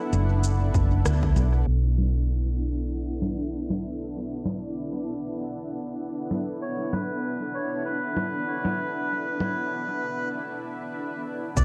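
Ambient dub with a spacious, deep mood, cut from a longer piece, where an evolving granular cloud pad holds a blurred Bm7 under a dark, round hollow-body electric bass sitting up front, filtered electronic shaker, rim click and congas are washed in dub echo, a punchy layered electronic kick hits briefly near the start, a filter sweep runs from 1.7 seconds, a reedy, breathy melodica enters at 6.6 seconds with its own dub echo, and a break arrives at 10.3 seconds, all bathed in a moderate echo-chamber reverb.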